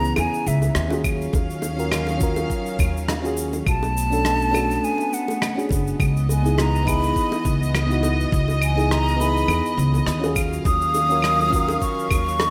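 Sunset chillout at 103 BPM with a gentle 16th-note swing, wistful and relaxed, this excerpt sets a breathy, hollow concert flute melody with vibrato and digital delay over a soft, round FM electric piano carrying chorus and delay, while a dark string section holds bowed chords sul tasto. An up-front, woody pizzicato upright bass anchors the low end with an electronic knocking kick entering at 1.0 s, as shaker, claves and rim click ring through gated reverb and tight, high-tuned bongos sit in the background. The harmony drifts among C#m9, D#m9 and Bm9 inside a lush hall reverb and bright 1980s-style digital production.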